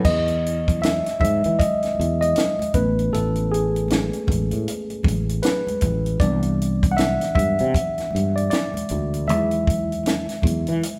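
A worn, slightly out-of-tune tine electric piano takes the solo up front through this soulful 78 BPM neo-soul excerpt in E major, moving from Emaj9 through Amaj9 and Cmaj9 back to Emaj9 over a 16th-note swing, backed by a growly fretless bass, a dry compact cocktail kit with dark cymbals, a high-tuned snare and a punchy kick, and very quiet, hard-handed congas, all sitting together in a large studio room.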